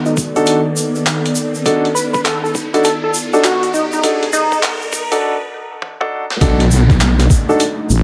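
Glitch hop at 101 BPM with a 16th-note swing and a playful, swaggering mood, this short cut opens on a smooth, warbling analog pad with 12-bit sampler grit and sidechain pumping over a B7#9 chord, while an edgy, tearing oscillator-sync lead with tape echo carries the melody until 4.6 seconds, a grainy tube shaker, a gritty thumpy kick, pumping grand piano stabs and a boom bap kit with a high-tuned snare, handclaps, hi-hat and toms build under filter sweeps and an electronic riser, then a break with a drum fill gives way at 6.4 seconds to a drop where a heavy, saturated, detuned wobble bass sits up front in light reverb.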